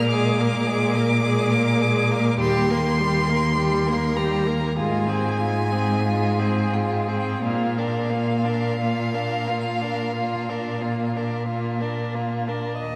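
In a rubato 4/4, this lyrical, serene slow romantic movement for string quartet, cut from a longer piece, has a focused, rich-toned first violin singing the high melody over a smooth, even second violin line, a clear, close viola accompaniment and an up-front cello bass. All four bowed with vibrato, they move through Bb7, Eb, Fm/Ab and Bb in a wet church reverb with a long decay of about three seconds.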